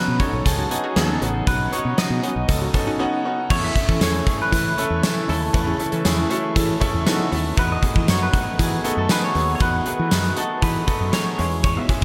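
1980s-style pop with a glossy, romantic mood, where a clean, twangy electric guitar carries the melody over a brilliant grand piano with audible action noise, both touched by slapback echo, while a lush, detuned unison pad sustains chords very quietly beneath. A round fretless bass and an up-front gated drum kit with a fat snare, tight kick, hi-hat, tambourine and crash cymbal drive the groove, joined by punchy, sawtooth polysynth stabs in the background with chorus and tape echo until 7.3 seconds, returning briefly at the very end. A woody marimba with soft mallets adds a brief, very quiet second line from 5.8 seconds, and everything sits in a big arena sound from a concert hall reverb.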